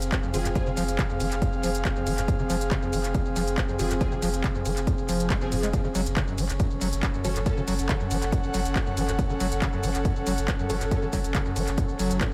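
A punchy analog kick drives this excerpt of peak-time techno, with a tape-warmed tone re-recorded in a large room. Around it, a layered electronic kit of handclaps, smooth hi-hats, ride cymbal and shaker pumps against the sidechain, trailed by tape echo, while a deep, thick sine sub bass with overdrive and low-pass filtering holds the low end. Further back, a squelchy, gritty square-wave acid bass riff with resonant filter sweeps, distortion, lush chorus and tape echo adds an industrial bite. An airy, breathy pad with a slow attack and long release floats above in chorus, and a bright, aggressive sawtooth rave stab with detuned unison and a moving notch cuts in behind the mix, most fully from 3.8 to 7.6 seconds. The harmony shifts from F minor to G-flat minor at 5.7 seconds, and the echo-heavy mix sits in light digital ambience, keeping the mood driving and industrial.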